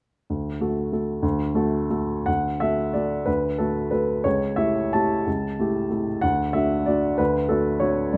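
This classical piano waltz, cut from a longer piece, has a sparkling, playful mood. It moves in 3/4 at a flexible rubato pace between 152 and 203 BPM, in D major with tuning set to A4 = 439 Hz. A solo upright piano plays from 0.3 to 8.2 seconds across a range from C#2 to A5, its warm, woody tone carrying a long sustain and sitting up front. The harmony moves from D to A7/C# and back to D, with a new section beginning at 2.3 seconds. Close, detailed microphones capture the instrument, set in a moderate large studio reverb with a 1.4-second decay.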